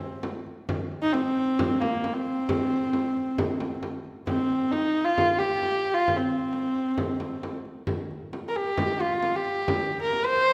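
Mongolian folk in a solemn, windswept mood, this brief excerpt from a longer piece features a single bowed horsehead fiddle up front carrying the melody with a rich, husky, earthy tone, light vibrato and portamento, while a frame drum struck with hard hands supports it more quietly, both heard through a wet recital hall reverb.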